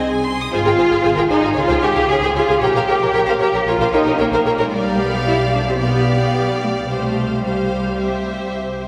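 A quick classical-period movement for string orchestra at 113 BPM in 4/4, dramatic and urgent, cut from a longer piece. A focused violin section carries the melody while a clear second violin line reaches higher, a smooth viola section fills in the accompaniment, and a lush double bass section anchors the low end, joined by an up-front cello section from 0.5 s to 8.5 s, with every section bowing with vibrato. The strings sit in a wet church reverb as the harmony moves from A-flat through D-flat and G diminished to G7, then to a C suspension that resolves to C.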